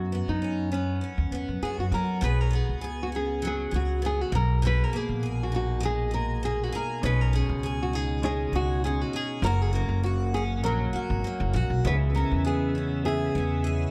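Carefree and heartfelt, this lightly swung acoustic pop excerpt sets a deep, full-bodied nylon-string guitar melody with finger squeak and digital delay over a bright, double-tracked steel-string acoustic guitar and a thumpy, gut-string upright bass. A clear, slightly detuned upright piano joins in the background at 7.0 s, and a shouting, lightly overdriven tonewheel organ adds sustained chords with key click, chorus vibrato and slow rotary speaker from 11.8 s, all within a dark, warm production with moderate studio reverb.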